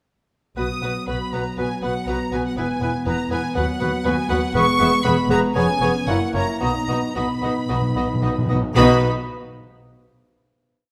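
In a straight 4/4 pulse, this cheerful, spirited classical-period piece for symphony orchestra sets a lush violin section on the tune over background violins, oboe, airy flutes doubling the melody in unison and at the octave, and a mellow clarinet on repeated-note second lines, while bassoon, viola section and a close-miked French horn section hold sustained chords above dark cello and warm double bass sections, with round, dry timpani entering at 6.6 s for a fill before the final chord at 8.8 s, all within a moderate scoring-stage reverb.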